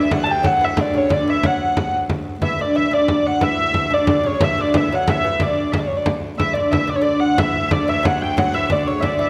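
Ancient and rustic, this medieval dance excerpt in D major moves in a straight 6/8 at 121 BPM, with a dark, woody, wheel-bowed hurdy-gurdy carrying the melody up front, a delicate fingerpicked gut-strung lute playing a second line beneath it, a biting, reedy viola da gamba holding a low D drone in the background, and a close, dry frame drum adding percussion, heard within a wet recital hall reverb.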